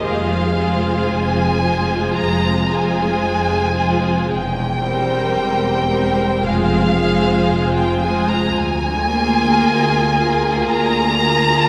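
Serene and tender, this slow romantic movement for string orchestra moves at 56 BPM in 4/4 with a rubato feel, drifting from F minor through C7/E and back before settling on Bb7/D, cut from a longer piece. Up front, a rich, focused violin section carries the melody with vibrato, while a smooth, even second violin line and a focused viola accompaniment fill in the inner voices. Beneath them, warm cello and double bass sections sit distant, the cello in the background, both bowing expressively and the bass with a soft attack, all bathed in a wet church reverb.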